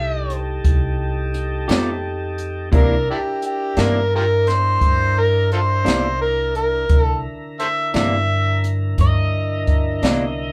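Slow blues in a rollicking, laid-back 12/8 groove, with a gritty, amplified harmonica leading up front with tongue slaps and scooped notes over a clean tonewheel organ with key click and slow rotary speaker, a woody pizzicato upright bass, a dark brushed drum kit with boomy kick and high-tuned snare, and a slightly broken-up, picked electric guitar through a small old amp with harmonic tremolo entering at 1.7 seconds, before an overdriven slide guitar adds a second line at 9.0 seconds, all captured live in one room with wet studio reverb as a cut from a longer piece moving from F9 to C9.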